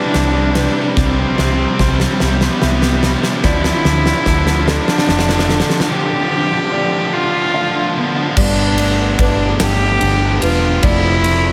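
A reedy, bowed cello with analog delay carries the melody up front in this soaring, hopeful post-rock excerpt in 6/8, over a felt-muted upright piano's dark arpeggios with slapback echo and analog delay, very quiet clean twelve-string electric guitar arpeggios, two overdriven background guitar riffs (a raw garage guitar throughout and a cranked stack guitar that stops at 8.4 seconds as the build-up gives way to Gadd9), a round hollow-body bass, and a huge arena drum kit with punchy kick, fat snare and bright cymbals playing a fill until 5.9 seconds, set in a lush hall.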